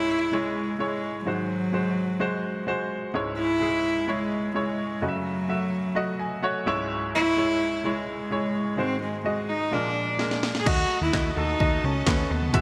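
A warm, intimate solo cello carries the melody with light vibrato and an airy, sul tasto bow, set up front over a clear, short-sustained baby grand piano in this driving, bittersweet piano-driven pop excerpt at 128 BPM in C# harmonic minor, with a grand piano fill at 6.0 seconds as the chords move from C#m through G#7 and F#m7. A drum fill at 10.2 seconds brings in an electronic house kit with a punchy kick, cracking snare, handclaps and crash, and at 10.7 seconds a funky, plucky analog bass with a moving notch joins alongside a lush, distant string section holding chords in the background over a D#dim. The bright 1980s-style digital production sits in a moderate hall reverb.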